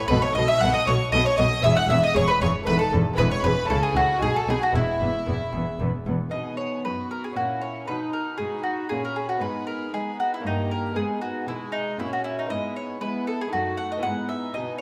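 A round, up-front picked mandolin carries the lively, festive melody of this baroque-style concerto excerpt in 3/4 at 117 BPM, moving from E major to B major at 6.3 s, over gut-string violin sections in the background, a dark, distant viola section, a nasal cello section, a rich double bass section that drops out at 6.1 s, and a bright, delicate fingerpicked lute, all set in a wet recital hall.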